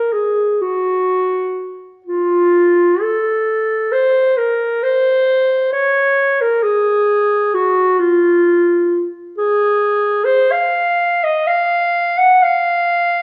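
Yearning and mournful, this short classical fragment from a longer piece features a lone, warm clarinet playing up front from 0.0 to 13.2 seconds, moving between F4 and Gb5 in a free, rubato 4/4 at roughly 48-68 BPM, its distant, roomy tone wrapped in moderate recital-hall reverb and a dark production.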